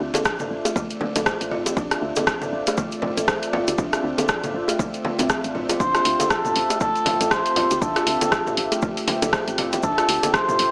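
Heard through a small speaker, this short afro house excerpt sits in a lush hall reverb with a touch of small room ambience, its spiritual mood built on a single Dm9 chord held by a smooth, dark analog pad with chorus, a round, woody FM bass and a buzzing, vintage kalimba playing arpeggios through digital delay, all three pumping against the sidechain. An up-front, tape-warm deep house kit of hi-hat, rim click and toms is soon joined by a deep electronic kick, while ringing congas, tight high-tuned bongos and a grainy cabasa sit in the background, giving a gently swung sixteenth-note feel. At 5.8 seconds a breathy, veiled cup-muted trumpet enters up front with a jazz-style solo melody, light vibrato and its own digital delay.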